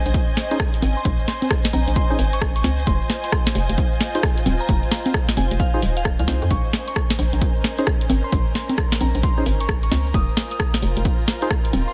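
A dense, heavily limited modern mix sits in digital ambience on this moody, bouncy piece of two-step UK garage, a short cut from a longer track, swinging at 132 BPM in Bb minor and moving between Bbm11 and Fm7. A hollow, knocking FM bass with a fast, decaying attack sits up front and pumps against the sidechain, joined at 0.1 seconds by a punchy, tape-warm electronic kick. A punchy analog drum machine fills out the groove with congas, hi-hat, rim click, shaker and a snare roughened by soft clipping. Underneath, a woody, lush studio string section bows with vibrato and also pumps, while a dark, percussive organ stab with a noise layer adds chorus and delay from 0.5 seconds. In the background, a pure, mellow synth bell carries the melody with a warbling vintage 12-bit grit. At 7.3 seconds, an airy, breathy pad with a slow attack and long release swells in with chorus and sidechain pumping.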